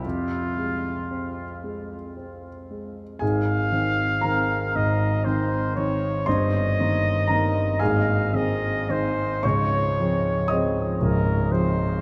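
Bathed in a vast, echoing cathedral reverb, this excerpt of a romantic classical duo unfolds at a slow 38 BPM in a rubato, unevenly pulsed 6/8, moving from F minor to A-flat major at 3.2 seconds. A clear trumpet with light vibrato sings the yearning, elegiac melody, sitting up front yet carrying a distant, roomy quality. It is supported by a warm, intimate concert grand whose deep bass, long sustain and audible action noise carry chords that drift through Eb/G toward a closing Dbmaj7.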